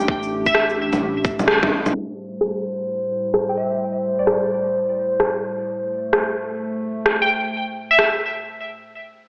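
A warbling, lo-fi tape-like pad holds sustained chords with vintage sampler grit and sidechain pumping over overdriven electronic shaker, rim click and bongos in this ghostly, rainy future garage excerpt, while a glassy, crystalline wavetable pluck with tape echo rings above, a deep, rumbling detuned saw bass and a tight electronic kick both fall silent by about 1.9 seconds, a filter sweep runs under the rest, and a break arrives at 8.5 seconds, all steeped in plate reverb and a dim AM-radio tone.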